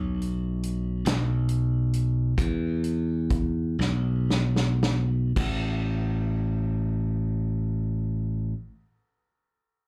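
A glassy, growly slap bass opens this short cut from a slow gospel performance in 6/8, its bright, punchy electric tone sitting up front from the very first moment. A natural country drum kit joins at 0.2 seconds, bringing an acoustic small-room sound with a medium-tuned snare, a punchy kick, hi-hat and crash cymbal. The performance gradually slows through its opening stretch, and the drums play a fill from 3.8 seconds that carries into a new section. The kit stops at 5.6 seconds, leaving the bass to hold the low register alone. The mood is hopeful and soulful, heard as a live gig through the venue's PA, with the bass direct and close against the faint club reverb and the instruments tuned slightly below standard pitch.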